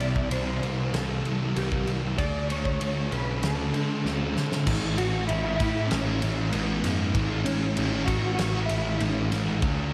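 Fuzz-drenched, double-tracked guitar riffs up front beside a round, overdriven picked bass in this blissful, wistful shoegaze and dream pop excerpt at 97 BPM, while a dark, clean, fingered electric guitar carries the melody through ensemble chorus and analog delay, a loose indie drum kit with fat snare, punchy kick and dark cymbals plays a fill from 4.0 to 4.7 seconds into a new section, and a lush hall reverb soaks the dreamy mix as chords move from Cmaj7 to D5 to A.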